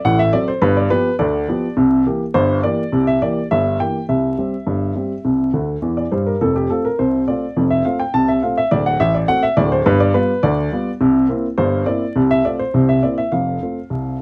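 Cheerful and playful, this ragtime fragment in straight 2/4, cut from a longer piece, features a solo upright piano with a woody, up-front tone, ranging from D1 to A5. The harmony moves through D7, G7 and C7 to F, with a brief piano fill at 5.5 seconds before the same chain returns and settles on F. Light reverb and a layer of vinyl crackle give the recording an old-record character.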